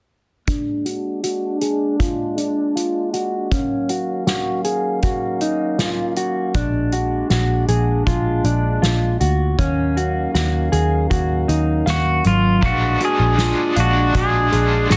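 A mellow, dark electric guitar sits up front, fingering clean arpeggios through subtle chorus, tape echo and a low-pass filter in this haunting, ethereal dream pop piece at 79 BPM in a straight 4/4. Beneath it, a woodwind section holds tight, classical-style sustained chords with light vibrato, while a distant, roomy drum kit played with soft mallets adds dark cymbals, a medium-tuned snare and a punchy kick. The harmony moves between Bb7b13 and Ebm9 as a filter sweep runs through the opening stretch. At 6.5 seconds a vintage foam-muted picked bass arrives, round and amped, pushed forward in the mix. A clean pedal steel guitar enters at 11.9 seconds with a compressed, fingerpicked slide melody of volume swells and tape echo, and at 12.6 seconds a bright, overdriven, double-tracked guitar joins with tremolo and lush chorus for the closing section, all set in light reverb under a dense, heavily limited modern master.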